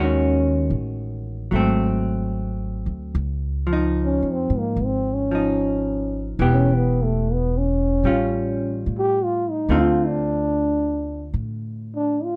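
A late-night, romantic jazz ballad in a gentle swing, where a growling trombone takes a breathy, raspy solo with scooped notes over a clean, dark hollow-body electric guitar and a woody pizzicato upright bass, all three up front in a small room on a rough home demo mix.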